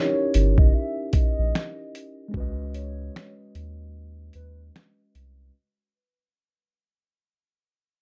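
A dark, warm mix with light reverb frames this short, nostalgic lo-fi hip hop fragment at 75 BPM in 4/4, with a swung sixteenth feel, fading out over D#7b9 and C#9sus4 chords across its 5.5 seconds. A hollow, woody clarinet-like synth lead with chorus and vibrato carries the melody over a mellow tine electric piano tinted by cassette tape, while a deep, round dub sub bass sits up front. A gritty sampler-style drum kit brings a thumpy kick, fat snare, hi-hat and finger snaps, and a break arrives at 3.9 seconds.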